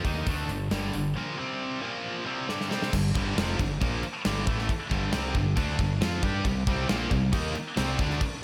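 Hard rock in G minor at 136 BPM, this short, aggressive excerpt carries a menacing edge from its first beat. A scooped high-gain guitar and a tight distorted guitar with slapback echo both drive the riff up front, bright and biting, while a growling fingered electric bass, overdriven and punchy, holds down the low end. A gated 80s drum kit sits forward in the mix with a tight kick, medium-tuned snare and glittering cymbals, and a drum fill at 2.5 seconds leads into the next section at 2.9 seconds. At 6.5 seconds a double-tracked distorted electric guitar slips in very quietly beneath the others as the harmony moves to C5. A lush hall reverb wraps the whole performance in a big, polished arena sound.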